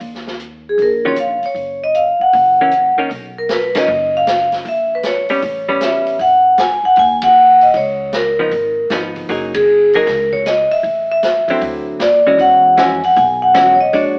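A bright, ringing vibraphone played with medium hard mallets and its motor off sits close and up front, carrying the melody over a dark, clean, compressed hollow-body guitar, a woody pizzicato upright bass and a distant swinging drum kit with a boomy kick and rolled-off top, in a cool, late-night small-group swing and bop excerpt that sounds like a band playing live in a stone room heard over AM radio, with band accents at 3.7, 7.2 and 9.5 seconds.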